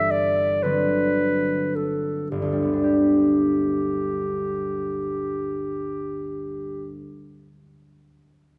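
A solo clarinet with a smooth top carries a serene melody up front in this classical romantic duo, playing until 6.9 seconds while a mellow, ringing concert harp provides fingerpicked accompaniment that lasts until 7.5 seconds. The piece moves in a rubato 6/8 at 33 to 41 dotted-quarter beats per minute in G major, slowing through its opening before a D7 over G resolves to G at 2.3 seconds. A wet scoring-stage reverb gives the duo a warm sense of space.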